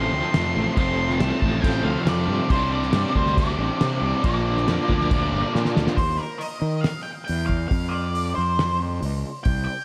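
An octave-fuzz lead guitar leads this swaggering, sunny classic rock passage at 138 BPM in a straight 4/4, its dark, up-front melody ringing with slapback echo over a punchy fuzz bass and a bed of three riffing guitars: one crunchy with tremolo, one scooped and compressed in the background, and a very quiet, double-tracked sludgy one. A faint tonewheel organ holds shouting, lightly overdriven chords with key click and slow rotary swirl, moving through F, Csus2 and Bb. A cloth-damped drum kit joins at 0.3 seconds with a dry, thuddy character, fat snare, tight kick and rolled-off cymbals, closing the first part with a fill. At 6.0 seconds the organ and rhythm guitars drop out and the groove shifts to half time over Ebsus2 and F5, leaving the lead, bass and drums to carry the passage. A lush hall reverb gives the whole mix a big arena sound in this cut from a longer piece.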